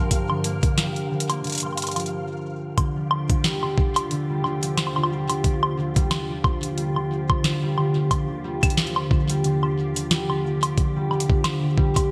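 A glassy FM pad and a mellow, thumb-plucked concert harp open this wistful, intricate IDM excerpt alongside a flickering, grainy granular texture in the background that stops at 2.1 seconds. The pad holds ethereal sustained chords with a slow attack, ensemble chorus, built-in reverb and vintage 12-bit sampler grit, while the harp's ringing arpeggios sit up front through a delay. A booming analog drum machine supplies a crisp snare, metallic hi-hats and woodblock, dressed in gated reverb and digital delay. Beside it, a compressed, pitched-up electronic kick adds a gritty, thumpy pulse; both drum parts are tape-warm and up front, on a lightly swung groove. After a brief stop from 2.1 to 2.8 seconds, the harmony moves from Gm7 to Ebmaj9 for the rest of the excerpt. The bright, 1980s-style digital production places the parts in a moderate, lush hall reverb.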